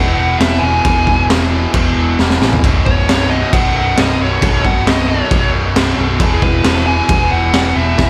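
Anthemic and energetic, this hard rock excerpt drives along at 134 BPM in a straight 4/4, with the tuning set a touch sharp at A4 = 445 Hz. A dark, smooth lead guitar carries the melody from the first moment, its overdriven tone trailed by tape echo, while a bright, double-tracked electric guitar grinds out a low riff touched with slapback echo. Beneath them, a picked electric bass adds a growly, amped punch that sits firmly in the lowest register. The raw garage drum kit enters at 0.4 seconds, sounding lo-fi and gritty with a muffled, rolled-off top, a high-tuned snare and a punchy kick placed up front, and it throws in a fill from 2.2 to 2.6 seconds. The harmony moves from E to B5 and back to E at 6.2 seconds, all set in a lush hall reverb that gives the short cut a big arena sound.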